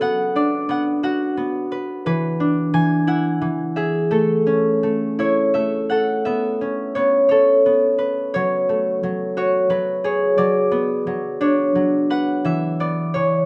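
Close and intimate, with a moderate small-room ambience, this brief lullaby excerpt for children places a lone concert harp up front, its fingerpicked strings sounding warm and ringing. The sleepy, gentle music moves at 58 BPM in a rubato 6/8 in A major, drifting from Bm through E7 to A before a second passage at 6.2 seconds settles into added-ninth colours such as Aadd9 and F#madd9. The harp's range runs from E3 to G#5, and the piece closes on an open E5 at 12.4 seconds.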